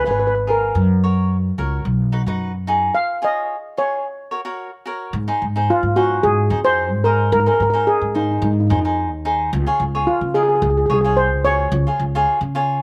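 A shimmering lead steel pan, struck with soft rubber sticks, carries the melody up front in this carefree, festive calypso excerpt at 110 BPM, taking a solo through the first 5.1 seconds with a break at 3.0 seconds. A crisp, picked cavaquinho with slapback echo supplies the accompaniment, while a growly, woody pizzicato upright bass anchors the low end. The dry outdoor sound keeps all three parts close as the chords move from C# and F# through B, then shift to Ab and Db once the second section begins at 5.1 seconds.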